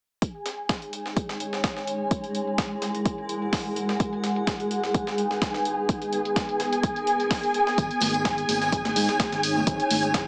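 Bittersweet yet energetic, this piano house excerpt moves in 4/4 with a light swing on the sixteenths, built on a single suspended chord voiced over G#. An overdriven, punchy electronic kick sits up front from the start, joined by a tape-warm electronic hi-hat under a low-pass filter and a gritty, pitched-up breakbeat sampler kit whose hats and medium-tuned snare pass through high-pass filters, with a filter sweep running across the drums. A silky, nasal sawtooth string pad holds sustained chords with ensemble chorus, vibrato and sidechain pumping while its own filter sweeps throughout. From 1.0 seconds a blurred, detuned granular cloud pad enters up front with its built-in reverb, pumping in step with the sidechain. At 7.8 seconds a fingered electric bass, direct and amped, enters alongside soft-handed tambourine and congas tucked into the background, all under a lush hall reverb and a small-speaker sound.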